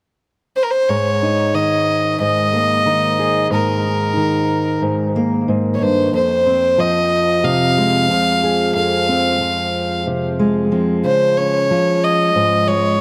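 A single bowed fiddle carries the melody up front, its nasal, reedy, gut-string tone a little boxy and trailed by a dub echo. It enters at 0.6 seconds, and the fingerpicked steel-string acoustic guitar joins at 0.9 seconds with fresh-sounding strings, a touch of finger squeak and an auditorium body, also sitting up front and carrying its own dub echo. This short folk excerpt moves in a straight 4/4 with a nostalgic mood. The harmony opens on a suspended Ab chord before shifting to F minor at 6.1 seconds and then to Db. Light reverb surrounds the pair, and the echoes give the whole mix a spacious, repeating quality.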